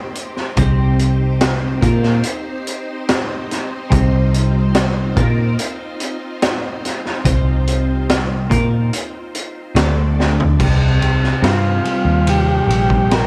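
Psychedelic rock with a mysterious, hypnotic pull, where a shimmering string machine holds soft sustained chords in the background, a gritty, boomy garage drum kit sits up front, a twangy, phased and double-tracked twelve-string electric guitar plays a riff over a round, foam-muted bass, and after a drum fill at 10.2 seconds a reedy combo organ with heavy vibrato and slapback echo takes the melody from 11.4 seconds, all in light reverb.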